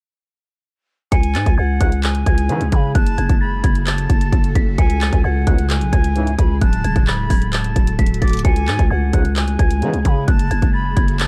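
A half-time trap beat at 131 BPM in C# phrygian drives this dark, hard-hitting hip hop excerpt, with an up-front trap kit of hard-clipped kick, bright hats and handclaps over a growling, buzzy 808-style bass, while a crystalline FM synth bell carries the melody through chorus and digital delay, a distant, airy jazz flute with vibrato and chiff plays a second line, a cloudy granular pad enters at 2.0 seconds with blurred, evolving chords in the background, and a dark brass ensemble adds punchy stabs starting at 1.8 seconds, all in a dry, dark production.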